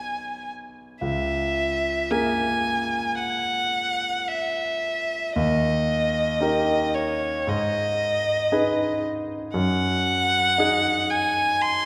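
A rich, smooth solo violin with vibrato sings a melancholic, solemn melody up front from the opening, while a clear, polished grand piano with a deep bass and short sustain accompanies it. This slow romantic duo in G# minor moves freely with rubato at around 54-59 BPM, its harmony passing through a dominant before returning to the home minor chord. The fragment, cut from a longer piece, is bathed in a wet concert hall reverb that lingers for about 2.0 seconds.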